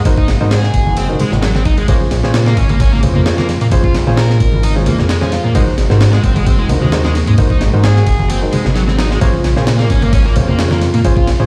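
A thick, swirling detuned saw bass with phaser and tube saturation drives this energetic, gritty breakbeat clip, cut from a longer piece, over a compressed, pitched-up, tape-warm sampler-style drum kit with a thumpy kick and medium-tuned snare sitting up front in studio reverb. Vintage, band-limited congas sit in the background beside a crunchy, double-tracked overdriven guitar riff and worn, intimate grand piano stabs with audible action noise, both carrying delay. A warbling analog pad in the background sustains chords alternating between Ab9 and Bbm7 with phaser, chorus, 12-bit sampler grit and sidechain pumping, and the whole mix sounds played on a big system in a bare stone room under vinyl crackle.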